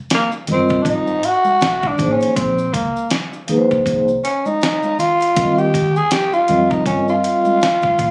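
Jazz-hop at 80 BPM with a lazy 16th-note swing, this smoky, nocturnal clip cut from a longer piece is led by a growling tenor saxophone solo, breathy and raspy with subtone, scooped notes and vibrato, set up front over a gritty, sampler-style drum kit with a thumpy kick and fat snare that sounds re-recorded in a large room. From 0.5 seconds a mellow vibraphone with soft mallets and slow motor vibrato rings through Fm9, Bbm11, Bbm9 and Eb69 chords until 7.6 seconds, while a woody, dark pizzicato upright bass holds the low end and bright maracas and congas sit close but in the background. The sound has a phone-in-the-room character, with studio ambience, light reverb and compression.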